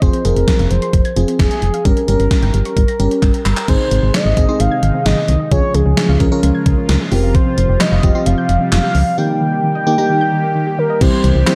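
This nocturnal, melancholic synth-pop piece in F minor opens at 131 BPM in a straight 4/4, with every part but one sounding together from the start. A punchy, round FM bass sits up front with the thumpy, overdriven 80s drum machine, whose kick, gated-reverb snare, hi-hat, handclaps and crash cymbal carry a sampler-style bite. Above them, a horn-like synth lead with soft attack and vibrato carries the melody through chorus and delay, while a glassy, bell-like FM electric piano provides the accompaniment and a soft, detuned pluck traces arpeggios in the background. After a drum fill from 3.2 to 3.7 seconds, an evolving, resonant pad with ring modulation, a filter swell and a slow attack enters at 3.7 seconds as the harmony moves from Fm and Gdim to Ab, Db, Fsus2 and Eb before landing on C. A moderate recital-hall ambience gives the whole a dark, warm production, and the passage is cut from a longer piece.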